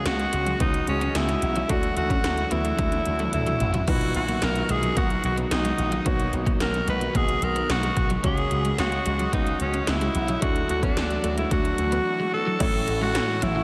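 Uplifting and glossy, this 1980s-style pop excerpt moves at 110 BPM in B major, with a raspy, gritty alto saxophone carrying the melody up front, its light vibrato trailed by tape echo. Behind it, a slap bass with an envelope filter and electronic pad drums with a punchy kick, metallic hats and gated reverb on snare and toms drive the groove, including a drum fill from 2.8 to 3.9 seconds. A grand piano with lush chorus and a slightly broken-up electric guitar riff sit in the background, joined by a very quiet, warbling analog pad. The whole mix is dreamy and soaked in a huge ambient reverb, and the chords shift from F#sus2/C# through Dadd9 and Bmaj7 before landing on A at 12.6 seconds.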